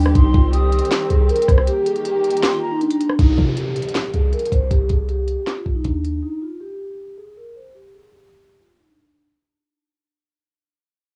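This menacing, hard-hitting trap clip moves at 158 BPM with a half-time feel in C minor, recorded at home on cassette with a dry, close sound. A mellow vibraphone played with soft mallets carries the metallic, ringing melody through a boxy small-room tone and tape echo. Behind it, a dark, distant chamber string section holds bowed chords, and a breathy, hollow silver flute adds a faint second line high above. Up front, a deep, boomy 808-style bass with a fast attack sits under an electronic trap kit of knocking kick, sharp snare, crisp hats, rim clicks and finger snaps, with a break before the strings drop out at 3.2 seconds. From there, an electronic downlifter sounds as the piece begins to fade, and a filter sweep moves across the vibraphone, which carries on alone after the drums and bass stop around 6.2 seconds.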